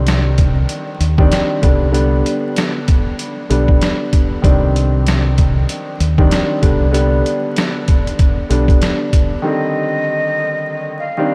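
Gritty and dark, this boom-bap hip-hop cut rides a swung 96 BPM groove in C harmonic minor, opening with a mellow, long-sustained grand piano comping on Cmadd9 and G/C over a round, deep dub fingered electric bass and a compressed, pitched-down sampler-style drum kit with a thumpy kick, medium-tuned snare and hi-hat. The bass drops out at 8.8 seconds and the drums at 9.3 seconds, leaving the piano as a breathy, straight-toned concert flute enters at 9.4 seconds, close and soft-edged, trailing a diffuse ambient delay. Vinyl crackle, light reverb and digital ambience lend the fragment its dusty, lo-fi air.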